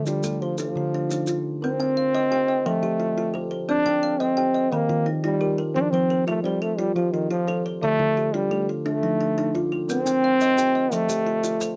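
Closely miked and detailed with a light touch of reverb, this hypnotic excerpt of southern African traditional music turns an mbira-style interlocking cycle in C dorian at 116 BPM in a straight 12/8. Two kalimbas spin ringing, woody arpeggios, one bright with a thumbnail pluck and the other soft, dry and mellow under the fingertips, while an up-front trombone sings a jazz-style solo melody full of vibrato and scooped notes. Grainy maracas appear only from 0.1 to 1.4 seconds and again from 9.9 seconds to the close, as the chords circle through Dm, Cm, F and Eb.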